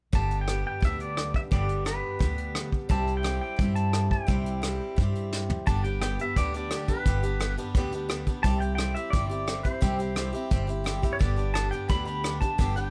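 A straight 4/4 beat at 173 BPM drives this easygoing, down-home honky-tonk and classic country excerpt in G major, with an up-front brush drum kit adding a fill at 5.3 seconds, a woody, growly pizzicato upright bass, a bright, boxy swing-style acoustic guitar, and a clean, compressed pedal steel guitar carrying the melody with fingerpicks, slide and volume swells, all captured by close, detailed microphones with little reverb.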